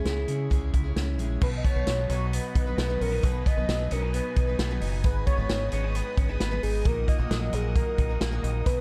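A dark, warm small-room sound frames this short cut from a longer piece of jangly indie pop in B major, moving at 133 BPM with a nostalgic yet bright mood. A velvety, detuned synth lead carries the melody with chorus, vibrato and slapback echo, over a shimmering octave-doubled twelve-string acoustic guitar in the background, twangy, slightly broken-up electric guitar arpeggios, a round, punchy dub bass and an up-front vintage kit with a tight kick, medium-tuned snare, hi-hat and crash. At 1.4 seconds a slow-attack string machine of violas slips in behind with sustained chords as the harmony moves from C#m to B, later passing through G#m and D#m/A#.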